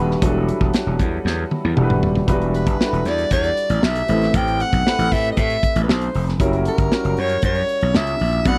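A dry, close studio sound with small-room ambience frames this cut from a longer piece of polished 1980s jazz-funk pop in E minor at 116 BPM, carrying an urban, nocturnal mood. Growly, overdriven slap bass and a punchy acoustic drum kit sit up front, while a concert grand piano with deep bass and lush chorus plays chords moving from Em9 through Am9 to F#7b9, and a drum fill from 1.2 to 2.3 seconds leads into the next section. At 2.6 seconds a clear soprano saxophone takes a jazz-style solo melody with vibrato, subtone and scooped notes, touched by slapback echo.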